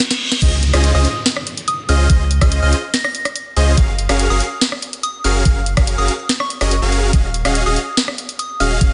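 Saturated sub bass sits up front with a deep, thick weight, entering at 0.4 s as this future bass excerpt in Db major drops into its half-time groove at 143 BPM. Before that, a brief break opens the clip with a trap drum fill and a reverse cymbal and downlifter, the effects running until 3.8 s. Huge, detuned supersaw chords carry the riff through Dbmaj9, Gbmaj9 and Ebm11, pumping with sidechain alongside the bass and an airy, dreamy lead that plays arpeggios in the background with chorus and vibrato. A soft, pure FM bell traces a high melody from 0.9 s, shimmering through chorus, phaser and digital delay. The knocking electronic kick and trap kit, with its sharp snare, bright hats, rim clicks and crash, sit up front with a tape-like glow and studio reverb. The mood is bright and lush, with light reverb and a gently rounded top end.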